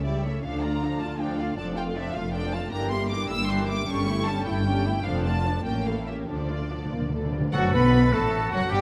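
Violins carry a smooth, vibrato-rich melody through this spirited, graceful classical-period orchestral passage in D minor, moving in a rubato 6/8 at about 94-106 BPM over a second violin line with portamento, lush violas, dark woody cellos and rich double basses. Calf-headed timpani enter at 6.3 s for a fill. At 7.5 s the harmony turns to F#madd11 as airy distant flutes, a clear close-miked oboe, a soft-attack clarinet, mellow horn chords and bright trumpet stabs join, all set in a wet scoring-stage reverb.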